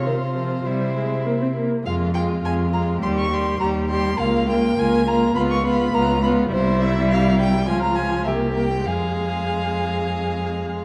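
In a straight 4/4 pulse at 102 BPM, this quick, stormy classical-period movement for string quartet in F minor presses forward with urgency, its harmony moving through Bbm/Db and Db7 before settling back on Fm at 8.9 s in this brief cut from a longer piece. The first violin carries a smooth, even melody between C5 and Db6 with light vibrato and a distant quality, while the second violin's focused line sits beneath it. The viola enters at 0.1 s with rich, expressive accompaniment coloured by portamento, and the clear cello anchors the bass up front, all set in a wet concert hall reverb with a dark, warm production.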